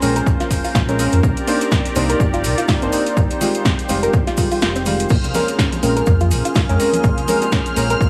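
A punchy, overdriven electronic kick sits up front in this moody deep house excerpt, dropping out briefly at 4.6 seconds before returning. Around it, a layered deep house kit adds a punchy snare, metallic hi-hats and crash cymbal with its own overdrive, while a grainy cabasa ticks in the background. A deep, sine-like sub bass with an octave anchors the swung groove. Above it, a soft, dark chord stab warbles through chorus, cassette tape and tape echo; a smooth, detuned analog pad sustains the Bbm9, Cm9 and Fm9 chords; and a round, nasal pluck plays arpeggios far back in the mix. A nostalgic, lo-fi tape-like pad adds phaser and reverb, and most of the synth parts pump against the kick with sidechain compression. Shimmering vintage string-machine violins enter at 5.1 seconds, followed by soft-handed congas and bongos at 5.2 seconds. The mix carries light digital ambience and a bed of vinyl crackle.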